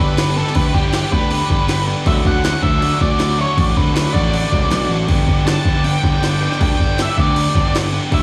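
An echo-heavy, reverb-washed excerpt of upbeat, jangly indie rock at 159 BPM, where a dark octave-fuzz lead guitar sings its melody over a scooped high-gain riff, a chorused overdriven guitar tucked in the background, a very quiet mellow combo organ holding vibrato chords, a round, punchy fuzz bass up front, and a gritty, pitched-up sampler-style drum kit with a thumpy kick entering at 0.2 s, all moving from G to D at 2.1 s and back to G at 5.1 s.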